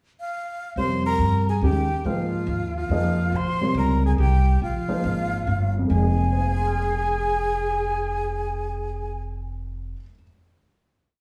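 A breathy concert flute opens this short modal jazz piece in F minor with a pickup, its crisp, unsteady, vibrato-laden motif carrying a spiritual, searching mood at 140 BPM in a swung 3/4. From 0.8 s a close-miked alto saxophone adds a second line in octave doubling, while a dark, mellow baby grand comps in syncopated quartal voicings with audible action noise, and a woody, thumpy upright bass walks below through Fm11 and Bbm11. Heard from further back under a wet studio reverb, the piece settles on a final Fm7, with the piano ringing alone until 10.2 s.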